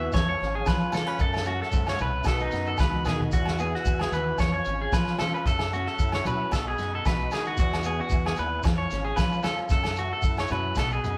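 An up-front electric guitar at the edge of break-up leads this sunny, carefree highlife excerpt, its twangy, slightly broken-up picked arpeggios ringing over a steady 4/4 groove with a light swing on the sixteenths. Beneath it, an old ladder-braced acoustic guitar picks a warm accompaniment while a deep dub fingered bass, dark and round, anchors the low end through a cycle of C#, F#m7, B and Eadd9. A vintage drum kit with a tight kick and medium-tuned snare keeps a natural studio-room feel, adding a short fill at 2.8 seconds. In the background, soft-handed congas with a thick skin, ringing agogo bells and a grainy, close shekere fill out the percussion. A mellow, flute-like tonewheel organ holds clean sustained chords behind everything else, colored by chorus vibrato and a slow rotary speaker. The band sounds as if it is playing live together in one stone room, with a moderate reverb giving the whole performance a relaxed, open air.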